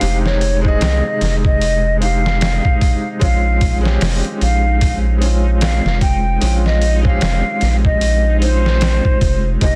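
Cinematic and hypnotic, this 75 BPM trip hop excerpt moves from Fm7 to Bbm7 as a hollow, pure silver flute carries the melody through dub echo over a felt-muted upright piano with tremolo, tape echo and 12-bit sampler grit, a deep, round analog bass sits up front beside a compressed, pitched-down sampler drum kit with a thumpy kick, and a very quiet reversed, granular texture swells in at 0.2 seconds.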